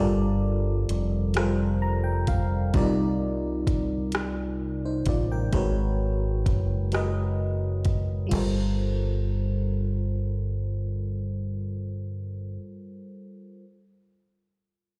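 A glassy, bell-like FM electric piano with chorus plays a fill at 1.3 seconds and moves through Gm11, Cm11 and Abm11 chords in this yearning, late-night fragment of slow six-eight R&B, alongside a dark, round fingered dub bass, and is joined by a soft, tape-warm electronic drum kit of kick, hi-hat, rim click and crash that plays from 0.9 to 8.5 seconds, the mix sounding dry yet played through a big sound system in a bare stone room.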